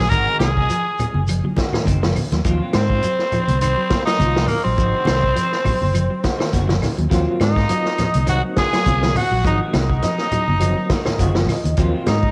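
A raspy, gritty tenor saxophone carries the melody up front with vibrato and tape echo, while a bright trumpet with scooped notes plays a second line in the background of this intense, defiant afrobeat excerpt at 103 BPM, lightly swung on the sixteenths and moving between Ab7 and Ebm69. A round, dark fingered electric bass and a vintage drum kit with a punchy kick and a rolled-off top drive the groove, framed by twangy clean electric guitar arpeggios, hollow-body semi-hollow guitar stabs with analog chorus, low-tuned congas, a grainy shekere and very quiet woody claves. An overdriven reed electric piano with fast tremolo enters at 7.1 seconds and plays a fill at 10.9 seconds, and the home cassette recording carries a moderate spring reverb.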